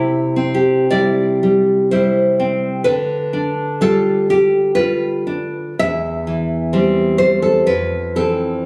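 A slow, flexible pulse in 3/4 sways freely through this short romantic excerpt for solo classical guitar, its nostalgic mood drifting from C through G7/D and C/E to Fmaj7. The nylon-string guitar sits up front, bright and full-bodied, fingerpicked across a deep classical range with an audible finger squeak. Captured on a phone in the room, the sound carries a moderate recital-hall reverb of about 1.4 seconds, and the passage breaks off at 8.6 seconds as part of a longer piece.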